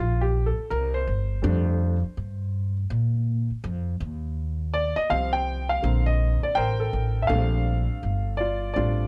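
This jazz-hop clip, cut from a longer hip hop piece, settles into a relaxed, cool mood at 82 BPM in 4/4, with a 62% swing on the 16ths and a home key of Bb major. A dark grand piano carries the harmony and the solo across the whole 9.1 seconds. Its mellow, intimate tone has a vintage smoothness, short sustain, audible action noise and a plate reverb. The upright bass sits up front beside it, plucked on steel strings, with a woody, growly bite and a bright edge. The chords move from Fsus4 through Bbmaj13/F, Eb69 and Bbmaj9, then arrive on Bbmaj13 at 7.3 seconds, where a new section begins. The whole mix rests in a light reverb.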